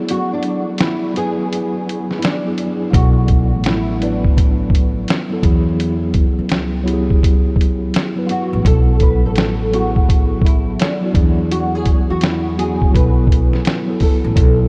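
A dark, fingerpicked nylon-string guitar carries a classical-flavoured melody from the opening moment, set over a mellow tine electric piano that sounds like it is coming through its own built-in speakers with a soft cassette-tape haze. Muffled, compressed sampler-style drums sit up front almost immediately, with a thumpy kick, a medium-tuned snare and hi-hat, all pitched down and roughened by vintage 12-bit grit. After this opening break, a woody, growly upright bass enters at 2.9 seconds, played pizzicato on steel strings with a bright edge in its low register. This lo-fi hip hop piece moves at an unhurried 84 BPM in 4/4 with a swung sixteenth-note feel, drifting through chords such as E9, Bm7 and E69 in B dorian. The guitar is treated with an ensemble chorus, a low-pass filter and a diffuse ambient delay, and a light studio reverb gives this hazy, reflective fragment of a longer piece a gentle sense of space.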